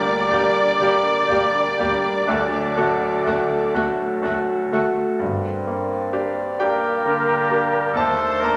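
Tragic and brooding, this brief passage from a romantic movement for piano and orchestra moves in a slow, rubato 12/8 at about 40-45 BPM in G minor, settling from G minor over D toward a D chord before turning back to G minor and closing on an E-flat major seventh colour. An intimate baby grand piano leads the melody up front, its natural tone carrying long sustain and audible action noise, while a rich chamber violin section shares the tune with focused vibrato and a smooth top until 7.8 s. Second lines come from a soft, pure flute section, a present but very quiet solo clarinet, a smooth-topped oboe entering at 0.3 s, and a second, even-toned violin section in the background. Violas bring intense, close bowing and a close-miked bassoon adds accompaniment, as expressive cellos and distant double basses hold the bass beneath. Roomy French horns and a tight, bright trombone section sustain chords, the trombones dropping out at 4.8 s, while clear trumpet stabs sound until 3.7 s and a round timpani stroke on soft mallets marks only the opening moment. 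A wet scoring-stage reverb with a 1.7 s decay surrounds the ensemble.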